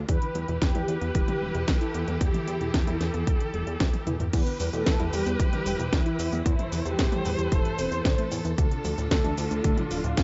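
A punchy, up-front electronic kick drives a straight 4/4 italo disco groove at 113 BPM, entering at 0.1 s together with a house kit with cracking snare, metallic hats, cabasa, crash and toms; both drum parts are tape-touched and re-recorded in a small room, and a drum fill from 3.8 to 4.3 s leads into the second section. Beneath, a glossy chorused synth bass with tube saturation anchors an Em, Am/E and Dm progression, while a warbling, lo-fi pluck with chorus and analog delay spins arpeggios in the background and a bowed studio string section holds sustained chords with expressive vibrato and portamento. Over the top, a round, dark synth brass carries the melody through chorus and analog delay, and this bittersweet, melodramatic fragment of a longer piece has a dry, gritty hardware character with a dulled top end.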